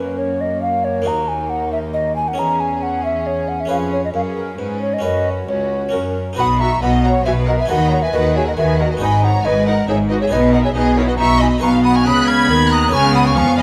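Festive and brilliant, this baroque-style concerto movement with solo episodes moves at 137 BPM in a straight 3/4 in B major, with a mellow, hollow alto recorder carrying the melody beside a focused violin section, while a lush second violin line, a distant viola section and a round, plucked harpsichord fill in the harmony. A clear cello section anchors the bass from the start, and a double bass section with soft attack and expressive portamento joins it at 6.4 s as the harmony turns from F# toward B and G#m before closing on C#7. Close, detailed microphones and light reverb keep the airy recorder and the bowed strings distinct in this short extract from a longer piece.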